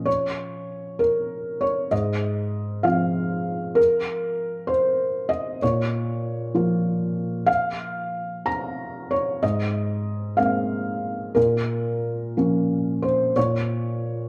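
A felt-muted upright piano plays alone from the very start, its soft, mellow tone carrying audible action noise that gives the sound an intimate, vintage character. This is a wistful, reflective piece of neoclassical minimalist piano in 6/8, played with a free, rubato feel. The harmony rests on B-flat minor, moves to F minor over A-flat at 1.9 seconds, and later touches an A-flat add9 chord at 9.4 seconds before settling back on B-flat minor. The part spans from Ab2 up to Bb5, and a wet spring reverb lends the piano a sense of being heard from further back in the room. The piano plays until 14.3 seconds, and the passage is cut from a longer piece.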